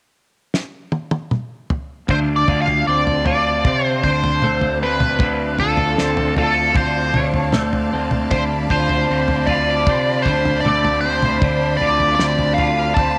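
Psychedelic rock in D dorian at 77 BPM, dark and trippy, this excerpt opens with a dry, fat-snared 70s drum kit playing a fill from 0.5 seconds before the band arrives at 2.1 seconds on a Dm7 chord. There, an up-front overdriven lead guitar with wah and slapback echo carries the melody over a bright, twangy twelve-string electric guitar riff run through a rotary speaker, a round fuzz-driven fingered bass, and a lush, bowed string section holding sustained chords with vibrato. Light reverb frames the mix.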